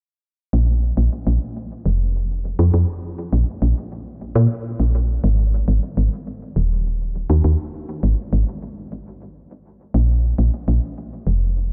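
Cerebral and intricate, this short IDM fragment, cut from a longer piece, moves in a straight 4/4 feel. A lone FM bass carries the whole passage from 0.5 to 11.7 seconds, ranging from Eb1 up to Bb2. Its tone is woody and round, with a fast attack that decays into a mellow, soft body, and it sits up front in the mix. Everything drops out for a stop between 8.8 and 9.9 seconds, after which a new section takes over until the fragment ends. A light reverb surrounds the bass, and the rough home-demo mix gives the recording an unpolished, sketch-like character.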